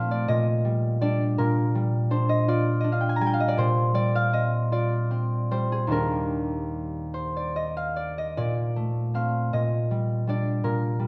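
In a 6/8 that breathes freely with rubato at roughly 48-55 beats per minute, this graceful, peaceful classical excerpt features a solo concert harp, fingerpicked and ringing, placed up front and spanning Eb2 to Bb5. Its chords drift from Ebmaj7/Bb through Gm7/Bb, Ebmaj7 and Bbmaj9 before settling back on Ebmaj7/Bb near 9.5 seconds. A lush recital hall reverb and a dark, warm production wrap the acoustic instrument in a soft glow, and the 11-second passage is cut from a longer piece.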